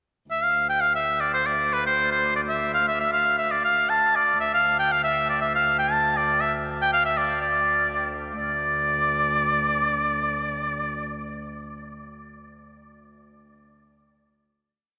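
Ancient and mysterious, this complete medieval dance in D minor moves in a straight 2/4 at around 119 BPM, tuned to A4 = 439 Hz, and gradually speeds up from 0.3 seconds until 10.3 seconds. An edgy shawm carries the modal melody as the solo voice, ornamented in a folk style with vibrato and a soft attack, close-miked and up front. Beneath it, a single bowed, fretted viola da gamba holds a low D drone from 0.3 seconds, its tone dark, woody and biting with light vibrato, ringing quietly far below the shawm. The melody unfolds as one section before settling onto a final note held from 8.4 seconds. A long, wet cathedral reverb gives the performance the spacious feel of a church or concert hall.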